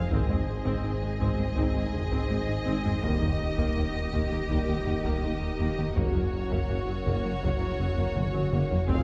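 Heard from further back in a wet scoring stage, this tense, vast hybrid orchestral and electronic film cue is cut from a longer piece, with a heavy-stick taiko ensemble driving it and closing on a drum fill at 8.2 seconds. A lush violin section with vibrato carries the melody over a second, focused violin line, a dark viola section in the background, a very quiet cello section and a woody double bass section, while mellow French horns, soft-attack trombones and a vintage tuba hold sustained chords and bass. Underneath, a bouncy, rubbery square-wave bass riff and a thick, detuned saw bass with chorus sit beneath a shimmering, retro chorused pulse-width pad whose slow-attack chords move from Ab to Eb to Gb.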